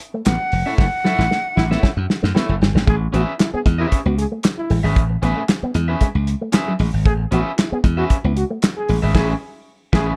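Funk at 115 BPM with a sly, hypnotic, dark feel, this brief cut pairs a thuddy cloth-damped drum kit, handclaps and crash included, with punchy up-front slap bass, a twangy envelope-filtered guitar riff, a slightly broken-up accompanying guitar, a whispery vibrato trombone line from 1.2 seconds, and a breathy, mellow flute that sits on F#5 only until 2.3 seconds, as a drum fill and band accent lead from F#m7 to Amaj9 at 2.9 seconds in a dry mix.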